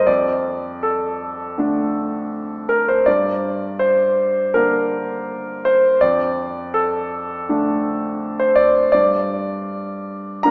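Melancholic and intimate, this short neoclassical minimalist excerpt cut from a longer piece features a solo concert grand piano played with a rubato feel in 4/4, moving between Dm/F and Gm before settling on a bare G5 chord near 8.9 seconds. The piano sits up front with a warm, natural tone and deep bass, ranging from F2 to Bb5. A wet concert hall reverb with a 2.3-second decay surrounds it, though the overall sound has a small-speaker quality.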